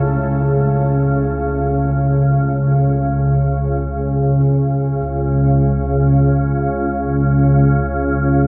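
A warbling, detuned organ-like drone sits up front in this desolate, unsettling dark ambient fragment, with a deep, moody sawtooth pad held in the background and very quiet bronze gamelan-type gongs entering at 4.4 s with metallic arpeggios, set inside a long, wet cathedral reverb.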